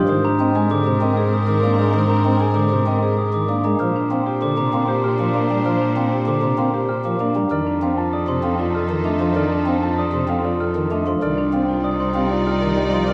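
Bright and hypnotic, this 194 BPM minimalist classical pattern piece in 6/4 and Bb major sets a dark, vintage baby grand melody in the background over soft flute-stop pipe organ with chiff and tremulant, ringing bell-like glockenspiel and mid-forward marimba arpeggios, smooth bowed chamber strings holding sustained chords, and a rich, close solo cello bass up front, all bathed in wet scoring-stage reverb as the harmony moves through Abadd9, Bbadd9, F7 and Cmadd9 in this cut from a longer work.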